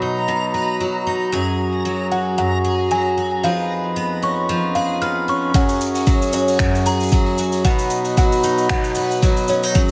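Folktronica in F# major at 114 BPM with a lightly swung 16th-note feel, this delicate, playful excerpt opens on sustained chords from a mellow, reedy accordion beneath bright, shimmering arpeggios from an octave-doubled twelve-string guitar placed up front with low-pass filtering and delay, while a reversed, granular, dreamy texture hovers high from 0.2 to 5.6 seconds. A tinkling, close-miked music box adds a second line with delay from 2.1 seconds, and at 5.5 seconds a deep, tape-toned electronic kick and a distant, roomy brush kit with cabasa, finger snaps and hi-hat come in. The chords move through B, F#sus2 and C#7/E# in a moderate echo-chamber reverb.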